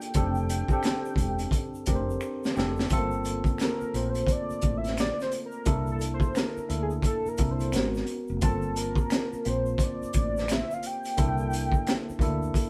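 A velvety synth lead, its detuned sawtooth tone thickened by a sub octave, chorus and vibrato, carries the melody through this late-night, introspective neo-soul R&B excerpt at 87 BPM in G dorian, moving into a soft solo at 2.9 seconds over chords such as Gm11, C13 and Abm11. Beneath it, a clean tine electric piano plays the harmony through its built-in speakers. A dark, growly fretless bass joins at 0.2 seconds, and a gritty, saturated breakbeat kit with a high-tuned snare and tight kick sits up front with a swung sixteenth-note feel, playing a fill from 2.2 seconds. An egg shaker, finger snaps and group handclaps stay in the background, and the whole band sounds like it is playing live in one room under light reverb.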